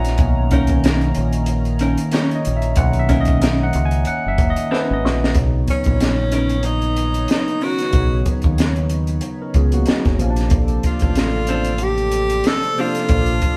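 Warm and smooth, this neo-soul R&B excerpt moves at 93 BPM in 4/4 with a gentle sixteenth-note swing, resting on a Bmaj9 chord before shifting to A#maj9 at 10.2 seconds. A barky, lightly overdriven tine electric piano takes the lead through its combo amp for the opening 5.4 seconds, set over a round, up-front fingered electric bass and a compact cocktail drum kit with a punchy kick, high-tuned snare and rolled-off top. A short drum fill leads into the next section, where a breathy, close-miked tenor saxophone enters at 5.7 seconds with scooped, jazz-style notes. From 0.5 seconds onward, a dark, clean hollow-body jazz guitar plays a compressed, picked second line, while a shimmering, retro pulse-width pad with chorus and a slow attack sustains chords in the background from the very start. The band sounds as if playing live together in a stone room with moderate reverb.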